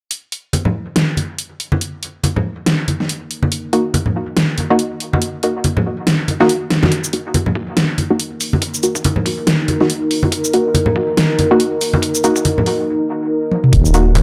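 Deep dubstep in Eb minor at 141 BPM with a swung half-time feel, dark and cavernous, where an overdriven dubstep kit with a huge snare and bright hats and dry, low-tuned congas open the piece, a moody detuned pad with chorus and reverb enters at 3.2 seconds and a muted, chorused dub chord stab with echo follows at 3.7 seconds, a compressed, pitched-down thumpy kick joins at 6.9 seconds for a build-up with a filter sweep on the stab, and a rumbling detuned saw bass lands on the Ebm chord at 13.7 seconds, all captured as a gritty, lightly reverberant hardware recording cut from a longer piece.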